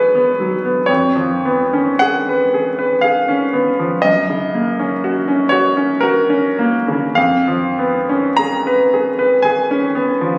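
Tender and serene, this brief romantic nocturne for solo piano drifts in 3/4 with a free, rubato feel between 47 and 62 BPM, its bright, polished grand piano sitting up front with brilliant, short-sustained notes spanning E#2 to A#5 over chords moving from G#m7/F# through C#7/E# to F# at 4.0 seconds, all heard from a phone in a recital hall with moderate reverb, club reverb and compression, tuned slightly high at A4 = 443 Hz.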